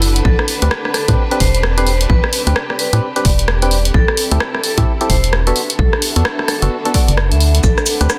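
A swung two-step UK garage groove at 130 BPM in A dorian, with a punchy electronic kick and an up-front analog drum machine of hi-hat and rim click, its snare softly clipped, sets a moody, soulful tone as an organ-like FM bass pumps with a dark, hollow attack. A dark, ringing vibraphone carries the melody through tape echo, while a percussive organ stab with chorus and tape echo enters at 0.6 s over Am11 and Bm7 chords. A lush violin section roughened by 12-bit sampler grit and a blurred granular cloud pad pump quietly in the background, and a grainy cabasa appears only at 7.6 s in this dense, heavily limited cut from a longer piece.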